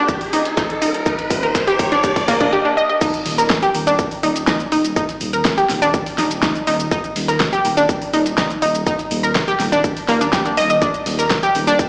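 Expansive and euphoric, this progressive house excerpt opens with a build-up where an electronic riser sweeps over a drum fill before the drop lands at 3.0 seconds on an Ebmaj7 chord. A bright, round analog pluck sits up front playing chorused arpeggios with tape echo and sidechain pumping, while a dark, rumbling detuned saw bass pumps beneath it. A punchy electronic kick, a deep house kit with fat snare, metallic hats, shaker and crash, and a very quiet, gritty sampler-style kit drive the groove, all within a lush hall reverb and the sound of a big system playing in a bare room.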